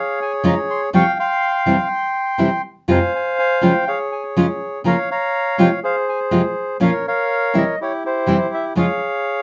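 A reedy, dark bandoneon sings the melancholic, sultry melody up front in this brief, rubato tango fragment, over a full-bodied, fingerpicked nylon-string guitar with a deep classical tone, both heard in a moderate club ambience as the harmony drifts from Db through C and F minor to settle back on Db.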